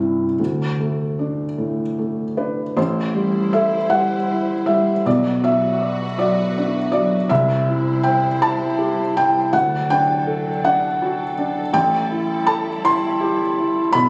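A felt-muted upright piano opens this longing, melancholic neoclassical excerpt, its dark, boxy tone sitting up front with audible action noise as it accompanies in a rubato 6/8 at around 50-56 BPM in A dorian. At 2.8 s a studio string section enters far lower in the mix, holding lush, woody bowed chords with vibrato beneath the piano as the harmony moves from Am7 through Bm, C and D before returning to Am7. Captured on a phone in the room with compression, the recording carries a moderate recital-hall reverb that lends the intimate playing a soft halo.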